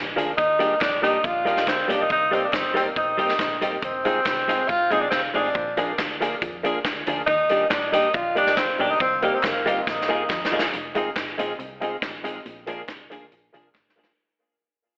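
A driving, straight 4/4 ska groove at 139 BPM in F dorian is set by a punchy big-band drum kit with hi-hat, kick and medium-tuned snare, dark foam-muted electric bass, crisp group handclaps, a clean electric guitar riff low in the register, and a second clean guitar accompaniment colored by tube saturation and tape echo. Over jangly, detuned honky-tonk piano stabs, a warm, distant tenor saxophone with light vibrato carries the up-front melody from 0.4 to 10.5 seconds through Ebmaj7, Cm7, Fm7 and Bb7 changes. A drum fill leads into a fade-out from 10.7 seconds, and the whole energetic cut sits in echo-chamber reverb with a telephone-like tone.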